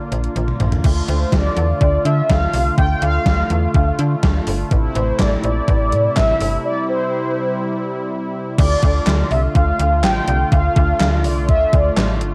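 Nocturnal and cool, this synth-pop excerpt in D minor moves at 124 BPM in a straight 4/4, with a drum fill at 0.4 seconds and a break at 6.6 seconds. A gated 80s digital drum machine sits up front with a thumpy kick, an overdriven gated-reverb snare, handclaps, hi-hat, toms and crash, alongside a snappy, metallic slap-like FM bass. Over a bold, nasal analog pad with chorus, a mellow synth brass carries a round, dark melody through chorus, cassette tape grain and analog delay, and the track has the light reverb of a home cassette recording.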